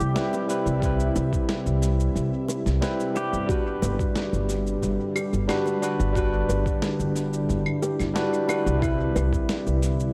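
Warm and smooth, this short sunset chillout excerpt moves at 90 BPM in G major, drifting from Cmaj7 to Gmaj7 and back to Cmaj7. An upright bass sits up front, woody and dark with gut strings plucked pizzicato, beside a barky, overdriven tine electric piano heard through a combo amp with analog delay. Behind them a shimmering ambient pad holds detuned, granular chords with chorus and its own reverb. A gritty, compressed, sampler-style kit of cabasa, snare and claves carries tape echo, joined by a thumpy electronic kick and very quiet, round, low-tuned bongos. A clean electric pedal steel guitar, played with fingerpicks and slide and full of volume swells, sings the melody on G4 until 3.5 seconds, when a metallic cello steel pan struck with hard rubber sticks enters in the background with delayed arpeggios. A moderate plate reverb and studio ambience give the mix an echo-heavy feel.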